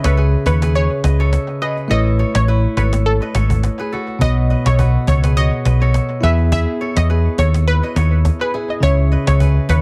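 An echo-heavy mix with little reverb frames this breezy, joyful afrobeats excerpt at 104 BPM with a lightly swung 16th feel, where an up-front, round, dark hollow-body short-scale electric bass anchors snappy close cajon, bell-like tine electric piano, crisp ringing fingerpicked kora and a detuned sawtooth analog pluck melody with chorus and a filter sweep, every part but the bass trailing analog delay over C#m, Aadd9, Badd9 and E chords, opening with a break that lasts until 4.2 seconds.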